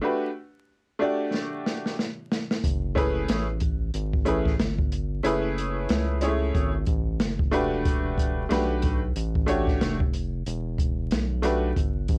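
Recorded at home on cassette with vinyl crackle and a dry, close sound, this short cut from a longer jazz-hop track has a smoky, mellow mood and a lazy swing. A brilliant, woody upright piano opens alone with rootless Em11 voicings, its slightly detuned tone given a tape-worn edge. At 1.3 seconds an acoustic jazz kit enters with a fill of hi-hat, boomy kick and medium-tuned snare; it sounds dark and smooth, with a rolled-off top that suggests a small room. A deep, round analog bass arrives at 2.6 seconds, fast in attack and sustained, its wave-folded tone sitting low beneath the harmony. The chords move from Em11 to F#m11 and back to Em11 at 7.5 seconds, with piano, drums and bass all kept up front in the mix.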